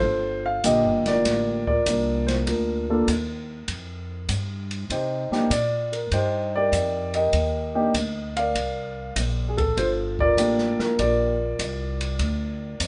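A jazz piano trio swings through this late-night excerpt at an easy medium pace, cut from a longer piece. A dark, mellow concert grand carries the melody up front, its deep bass register adding weight as it moves over minor ninth chords that shift from Gm9 to Cm9 at 4.9 seconds and back at 9.8 seconds. Close beside it, a woody upright bass plucked on steel strings anchors the low end with a dusky, forward tone. An open acoustic drum kit joins at 0.6 seconds, sitting lower in the mix with smooth, shadowy cymbals on ride and hi-hat, a medium-tuned snare and a punchy kick. The group sounds like it is playing live in one room, with light reverb and a soft, rounded top end that suits the swinging, after-hours mood.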